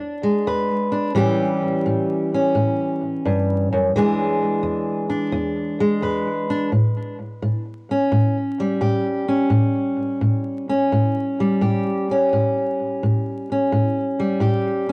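Blues excerpt with a rollicking, laid-back swing, cut from a longer piece and carried by a single fingerpicked steel-string acoustic guitar playing alone from 0.0 to 14.9 seconds, moving through E7 and A7 chords across two sections that turn at 6.7 seconds. The guitar sits up front with a warm concert tone, finger squeaks and an analog delay. Light reverb, a cassette home recording character and vinyl crackle give the sound a lived-in, homespun feel.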